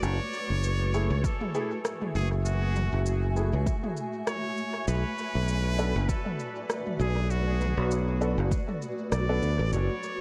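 A growly, bright fingered electric bass sits up front in this short ambient dub excerpt, holding the low end from the start until 9.9 seconds in F# minor at 99 BPM, with a 16th-note swing giving the 4/4 pulse a relaxed, meditative gait. Above it, a straight-muted trumpet carries the melody with a nasal, brilliant tone, classical-style vibrato and punchy phrasing, its lines trailing into dub echo. A cloudy granular pad with slow attack and long release sustains the chords, moving from F#m9 to Bm7 at 4.9 seconds, its detuned, blurred texture evolving under its own reverb. An organic electronic kit of rim clicks, shaker and toms also feeds into dub echo, while a deep, overdriven electronic kick, re-recorded in a large room, joins at 1.2 seconds and stays prominent until 8.7 seconds. A woody upright piano adds clear stabs in the background from 0.9 seconds, completing a hazy, echo-heavy digital ambience.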